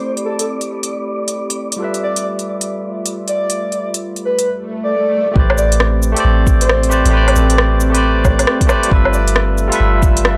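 Future garage at 135 BPM in A minor, rainy and nocturnal, with a swung 16th-note feel: a breathy, flute-like synth lead with vibrato and lush chorus sings over a barky, lightly overdriven tine electric piano and a warbling, nostalgic tape-like pad, both pumping to the sidechain, while an airy, wind-like tuned noise texture hangs on a single note until 4.5 s. A deep house kit of smooth hats, cabasa, rim click and woodblock sits up front, and an electronic swell at 4.6 s leads into a fuller passage at 5.4 s, where a deep kick and a soft, round 808-style bass join the Am11 and G13 chords. The mix is dry and gritty, with transformer saturation giving it a hardware edge, and this is a short cut from a longer piece.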